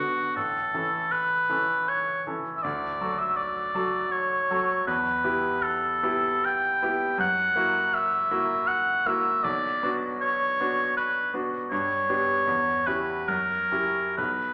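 Classical romantic music for oboe and grand piano, this fragment of a longer piece moves in a solemn, melancholic 3/4 at a flexible 64-82 BPM, its rubato pulse giving each bar room to breathe. The oboe carries the melody from start to finish, sitting up front with a warm, vintage tone and singing in a solo classical manner between F#4 and G5. Beneath it, the grand piano accompanies across a lower span from A1 to A4, its sound bright, brilliant and polished, with a present, short-sustained touch that keeps the harmony clear. The harmony drifts from A through D, Em and F#7 to Bm, then darkens through G and C#dim/E before coming to rest on a tense F#7b9 at 13.3 seconds. A wet recital hall reverb with a 1.5-second decay surrounds the duo, lending the 14.5-second passage a spacious, concert-room glow.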